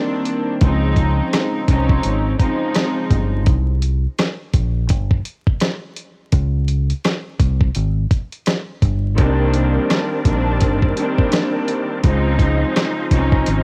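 A dry, crackly cassette home recording carries this dark, moody boom-bap hip-hop excerpt at 84 BPM with a swung sixteenth feel, moving between Cm9 and Dbmaj9 chords. Soft, floating bowed strings, filtered and tape-worn, open the track, drop out at 3.4 s and return at 9.2 s. Up front sit a gritty 12-bit sampler drum kit with thumpy kick, fat snare, rim clicks and hi-hat, and a round, deep fingered electric bass, while from 9.2 s a reedy tonewheel organ with fast rotary speaker, chorus vibrato and key click adds sustained chords in the background.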